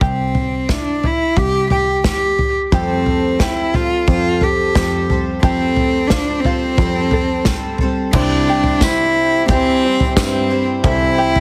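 A dry, heavily compressed radio sound frames this excerpt of anthemic indie folk at 89 BPM in C major, where a close, bowed cello with light vibrato, an airy sul tasto tone and tape echo carries the melody up front over a plunky fingerpicked open-back banjo in the background, a round, foam-muted picked electric bass and an unplugged drum kit with a punchy kick played with bundle sticks. At 2.7 seconds a shimmering, octave-doubled twelve-string acoustic guitar joins with fresh strings and finger squeak as the chord moves to Fadd9. From 8.1 seconds the arrangement builds further with a very quiet, woody, slightly detuned upright piano and a reedy, breathing pedal harmonium, while a jingly, distant tambourine appears briefly.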